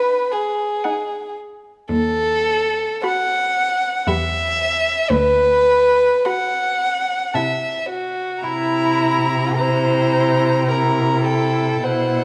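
A tender, serene slow romantic movement for string quartet in 3/4 at 54 BPM, cut from a longer piece, opens with two bowed violins and a viola: the first violin carries the high melody with a rich, smooth vibrato, while the second violin, dark and woody and placed up front, sits louder on its inner line above the viola's warm, even accompaniment. At 1.9 seconds a focused cello enters on the bass with clear vibrato, and the harmony moves through B7/D#, Em, Bm/D and Am/C under an uneven, rubato pulse. A moderate recital hall reverb surrounds the quartet.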